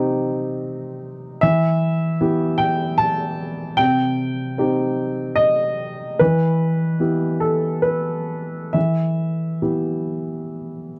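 A woody upright piano plays alone and up front through this 11-second excerpt, a reflective, intimate piece of neoclassical minimalist music in 3/4 with a free, rubato feel. Its harmony moves back and forth between C minor and E minor chords across a range from C3 to A5, with the piano tuned to A4 = 435 Hz. The natural, warm tone sits in a moderate booth ambience with a short decay.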